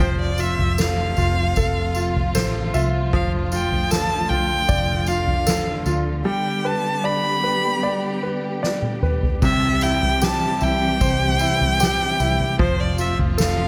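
A rich, up-front bowed violin with expressive vibrato and portamento carries the melody from the start of this heartfelt, hopeful pop ballad at 76 BPM in C major, over a clear, intimate concert grand piano that adds a fill at 2.0 seconds, a lush studio string section holding sustained chords, a round, foam-muted vintage electric bass, a soft-mallet drum kit that plays a fill at 8.6 seconds, its dark cymbals, fat snare and boomy kick all struck with soft mallets, and a distant, jingly tambourine entering at 0.4 seconds, all moving through F, Dm/F, G, C and F in light small-room reverb.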